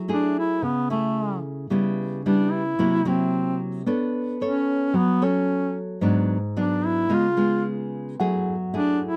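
Romantic and sunny, this short bossa nova fragment opens at 0.0 seconds with a dark, fingerpicked nylon-string guitar in classical style, joined at 0.1 seconds by an up-front duduk singing a folk-style melody full of vibrato and scooped notes, close-miked and carrying a warm tone. At 8.2 seconds a clean tine electric piano slips in quietly on a single high note with medium tremolo through a combo amp, as the chords circle from F#m9 back home to F#m9. Light reverb and a faint mains hum give the rough home-demo mix an intimate, informal feel.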